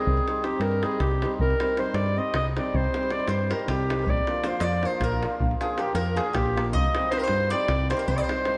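A straight 7/8 pulse at 314 BPM counted in eighths drives this short fragment of fiery, restless Balkan wedding-band folk in C minor. A warm, classical-style clarinet carries the melody up front as the soloist, its tone distant and roomy. Beneath it, a shimmering, ringing hammered dulcimer supplies accompaniment, a round, amped fingered electric bass anchors the low end, and a tight, compressed davul with a saturated edge keeps the beat. At 3.3 seconds a bright, picked bowl-back mandolin with doubled strings joins as a quieter second line in the same register as the clarinet. The harmony moves from C minor to B-flat and back, all inside a moderate concert-hall reverb and a dark production.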